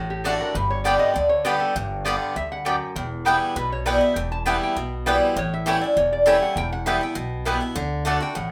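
Bluegrass cut from a longer piece, rustic and driving at 200 BPM in E dorian, with a metallic, nasal lap resonator guitar played with slide and fingerpicks carrying the melody, a boxy, up-front picked swing-style acoustic guitar with audible finger squeak giving accompaniment, a thumpy, gut-strung upright bass plucked beneath, and a bright mandolin adding double-string stabs from 0.2 to 8.2 seconds, all set in a moderate studio reverb over chords moving from D through G, Em and A7 back to D.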